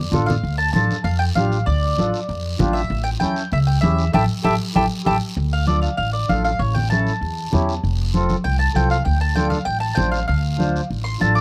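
A dry, close small-room recording with a 1970s studio character carries this danceable, passionate cumbia excerpt, where a bright, double-strung mandolin sits up front over a thumpy, woody pizzicato upright bass, a reedy, mellow accordion, ringing hard-handed congas and a raspy, saturated guiro, with a band accent at 4.1 seconds leading into a mandolin solo from 5.4 seconds.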